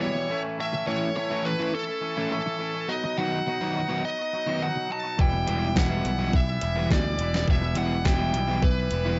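Indie rock with a restless, cool mood, this short excerpt opens with a bluesy, distorted lead guitar carrying the melody up front with slapback echo over a crunchy overdriven guitar riff tinged with analog chorus and a bright, clean, twangy electric guitar riff, before a growly picked bass and a crisp, thumpy 8-bit drum machine with hi-hat and snare join at 5.2 seconds under light reverb.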